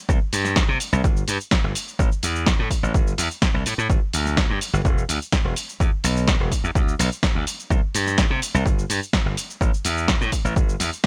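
A dry, bright production in a 1980s digital style frames this funky, joyful slice of filtered disco house, cut from a longer piece and running straight in 4/4. Up front, an analog-sounding electronic kick drum thumps beneath a punchy drum machine that carries a snare, with its hi-hat and cabasa pumping under sidechain compression. A glassy, direct slap bass, also pumping, plays from about 0.1 to 10.9 seconds.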